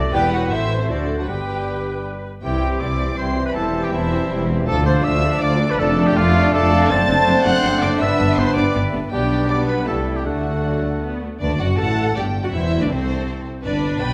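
In a quick 3/4 at 161 BPM with a straight feel, this spirited, lively classical-period movement for symphony orchestra is cut from a longer piece, opening in C major and moving to G major at 6.9 s. A muted chamber violin section carries the melody high up with a veiled, con sordino tone and light vibrato, while a second, more distant muted violin section adds a supporting line in the background. A clear clarinet, a solo oboe with light vibrato, and a pure, straight-toned large flute ensemble also play second lines, the clarinet very quiet and roomy. Underneath, a rich muted viola section and a close-miked solo bassoon supply accompaniment, a very quiet French horn section holds mellow sustained chords, and from 2.4 s a punchy trumpet adds stabs from the background. The bass rests on a dark, smooth-topped muted chamber cello section and a muted double bass section placed up front. The winds and brass drop away at 11.2 s, leaving the strings to finish at 14.1 s in a wet recital hall reverb.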